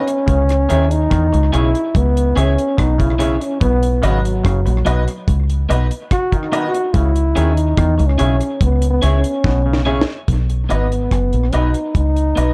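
Roots reggae at 72 BPM in B major, warm and sunny, cut from a longer piece, where a dark, punchy trombone with scooped notes and vibrato solos up front until 10.3 s over a chord cycle moving between C#m and B, carried by tape echo and plate reverb. A round, foam-muted fingered bass sits up front beside a dry, smooth drum kit with a high-tuned snare and tight kick, which plays a fill from 9.4 s, while a slightly broken-up electric guitar with a vibrato effect, brilliant, slightly detuned upright piano stabs and a stringy clav playing arpeggios in the background until 10.0 s fill out the accompaniment. The production is dark with light reverb.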